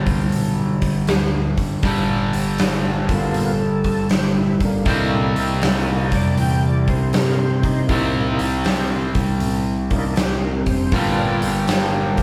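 A crunchy, double-tracked overdriven guitar riff opens this raunchy, driving excerpt of swung blues rock with a southern rock edge at 79 BPM, backed by a growling, round overdriven bass and a big, up-front acoustic drum kit with tight kick, medium-tuned snare and hi-hat in a bright stone room. At 3.1 seconds a thick, gritty tonewheel organ enters with sustained chords, its key click, chorus vibrato and slow rotary speaker filling out the sound as the harmony moves from G7#9 to C7#9 and back. The band sounds as if playing live together in one room, bathed in lush large-studio reverb.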